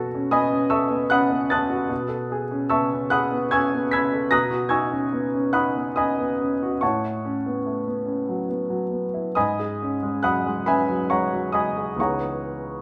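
In a 3/4 with free rubato, the pulse drifts between 66 and 78 BPM, giving this short excerpt from a longer classical work a hazy, wistful mood in the impressionist manner. A solo grand piano carries the entire passage from 0.0 to 12.8 seconds, spanning C#2 to B6, with a clear, intimate tone placed up front and the audible noise of its action adding a natural closeness. The harmony floats through unresolved colours, opening on B9sus4, moving to Badd9 at 4.3 seconds and A69 at 6.8 seconds, then G#7sus4 before settling on C#m9 at 12.0 seconds. A moderate recital hall reverb, with a 1.6 second decay, surrounds the instrument with gentle space. The piano is tuned slightly low to A4 = 439 Hz, lending the wistful tone its own quietly distinctive colour.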